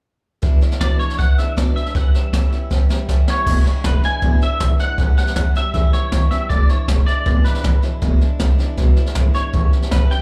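A picked steel-string acoustic guitar and a jazz brush drum kit open this upbeat, rollicking rockabilly excerpt together at 0.4 s. The guitar has a warm dreadnought body with audible finger squeak, set low under the up-front brushed kit, whose dark cymbals, high-tuned snare and boomy kick sound natural in a small room. A bright, clean, twangy electric guitar takes the melody almost at once, its picked lines dressed in ensemble chorus, plate reverb, slapback echo and tape echo. After a drum fill, a woody, thumpy pizzicato upright bass with steel strings joins at 3.5 s as the second section begins, the harmony rocking between E7 and A7 in a straight pulse. The whole performance comes across as a live gig heard through the venue's PA, fairly dry, with club ambience around it, and it is cut from a longer piece.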